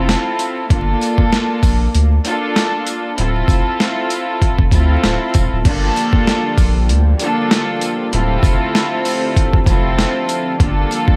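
Boom-bap hip-hop at 97 BPM with a swung sixteenth-note feel, tough and moody in G dorian, taken from a longer piece. A gritty, sampler-style drum kit sits up front, compressed, pitched down and overdriven, with a thumpy kick, a medium-tuned snare, hi-hat and crash cymbal. Beneath it, a soft dub sub bass holds deep, round sustained notes from the very start. A bowed studio string ensemble carries the harmony with a reedy, gut-string, period-style tone and light vibrato, moving between Dm7 and Gm7 chords. A jingly acoustic tambourine ticks along quietly in the background. At 5.6 seconds a warm analog pad enters with smooth, warbling, detuned sawtooth chords under a lush chorus, and the whole dry mix is dusted with vinyl crackle.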